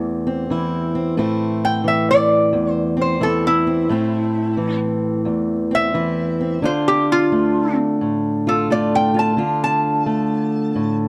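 Acoustic country blues in A minor, this brooding, mournful piece moves at 88 BPM in 4/4 with a swung eighth-note feel, cut from a longer performance. A fingerpicked steel-string parlour guitar opens at 0.0 seconds, its boxy tone, fresh strings and audible finger squeak sitting up front as it carries the accompaniment from low E2 up to F4. At 1.6 seconds a lap resonator guitar enters with the melody, played slide with a steel bar and fingerpicks, its metallic, nasal voice ringing between E4 and A5 through plate reverb. The harmony rests on A minor before shifting to D minor at 6.6 seconds. Both guitars stand close in a wet-sounding booth, and the overall production is dark and warm.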